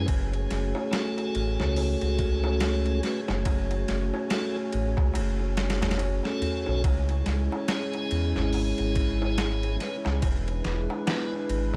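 Trip hop at 71 BPM in F# minor, this brooding, cinematic excerpt is cut from a longer piece and moves through F#m, C#m and E7 with a 16th-note swing. A gritty, pitched-down boom bap sampler kit sits up front, its thumpy kick, medium-tuned snare, hi-hat and ride compressed, while a deep clay-shell darbuka, saturated and compressed, stays in the background. A round analog bass blends sawtooth, sine and triangle tones with a fast attack, sustaining and evolving beneath everything else with transformer saturation and an up-front presence. Above it, a tonewheel organ with a piping, scooped tone and audible key click runs through overdrive, a slow rotary speaker, tremolo and tape echo until 11.3 s, while a moody detuned pad of square and sawtooth waves with a sub octave and moving notch swells in slowly under chorus. An airy, breathy wind-like noise layer held on G#4 drifts quietly behind in its own reverb, and the whole mix is dry and gritty, with vinyl crackle.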